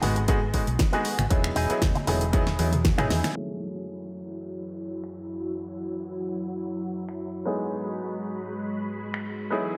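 A clear, worn baby grand piano with audible action noise sits up front through this sleek, groovy nu-disco excerpt at 117 BPM in F# dorian, joined at the start by a dark, envelope-filtered electric guitar riff with chorus and delay, a round hollow-body fingered bass, a punchy electronic kick, a pop kit with a fat snare, finger snaps and filtered hats and toms, and very quiet bright congas; after a drum fill, the section from 3.4 s brings lush sustained chords from a vintage sawtooth string machine with ensemble chorus and sidechain pumping, a filter sweep on the drums and a faint downlifter, the whole mix soaked in dreamy hall reverb.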